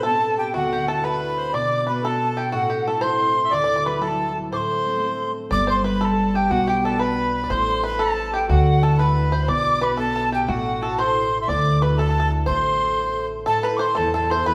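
A mellow mid whistle carries the melody from the first moment, airy and expressive with vibrato and a chiff on its tongued notes, while a reedy accordion and a twangy, fingerpicked bluegrass banjo play a second line beneath it and a ringing concert harp fills out the accompaniment. This is a dark yet spirited Celtic jig in 6/8 at 121 BPM, set in A dorian, with a lively, straight feel. At 5.5 seconds a woody upright bass joins, plucked on gut strings with a thumpy, up-front presence, and it holds the low end until 13.5 seconds. The harmony moves through chords such as Amadd9, Dadd9, Bm and G, and the tune is repeated before a new section begins near the close. The band sounds as if it is playing live together in one stone room, whose reverb lends the whole a damp, resonant space. The recording is cut from a longer piece and stops at 14.5 seconds.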